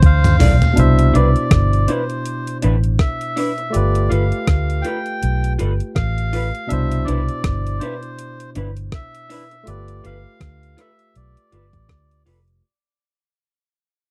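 Lovers rock reggae at 81 BPM in C major, tender and sweet, with a loose 16th-note swing, heard as an excerpt cut from a longer piece. It opens with a drum fill from a gated 80s digital drum machine, its thumpy kick, hi-hat, rim click and toms overdriven, sampler-like and up front, before the track fades out from 0.8 s to the end. A reedy, breathy melodica carries the melody with a nasal, band-limited vintage tone and tape echo, set against a barky tine electric piano, lightly overdriven through a combo amp. A dark, round, foam-muted fingered bass sits punchy and forward underneath, while an electric guitar through a small old amp adds slightly broken-up, compressed, lo-fi stabs bathed in lush chorus from 0.4 s. The harmony moves through C69, G9, Cmaj9 and G9, and the close, dry 1970s-style studio sound keeps the parts intimate.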